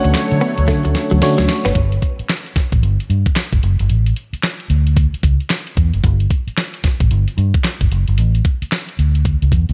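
A slick, confident new jack swing excerpt opens with a full texture: a clear, intimate grand piano in the background holding a single high note with tape echo, a glassy, bell-like FM electric piano with chorus, a smooth detuned sawtooth pad, and a bright, twangy direct-recorded guitar riff under subtle chorus, all over a Dmaj7 chord. The swung groove comes from a gritty, compressed sampler-style kit, with a thumpy kick, fat snare, hi-hat, handclaps and tambourine sitting up front, and a drum fill runs from 0.7 to 1.8 seconds. At 1.8 seconds the piano, electric piano, pad and guitar have dropped away, leaving the dark, round, foam-muted fingered bass and the drums to carry the passage. The bass stays punchy and prominent as the harmony moves from Dmaj7 to Gsus2 and through stretches with chords dropped, with the bass and drums continuing until the cut at 9.7 seconds. A digital ambience frames the mix.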